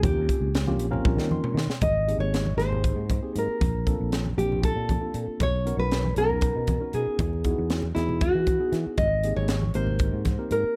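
A full-bodied, fingerpicked nylon-string guitar with plate reverb carries the melody up front in this funky, bright electric jazz fusion passage in 7/8 at 234 BPM, joined by a clean tine electric piano, also with plate reverb, a growly, amped fretless electric bass, an airy, polished drum kit with a high-tuned snare and punchy kick, and soft-handed, low-tuned congas in the background, while a drum fill and an electric piano fill at 1.1 seconds lead from the opening Eb13 into a shift to Abmaj9 at 1.8 seconds.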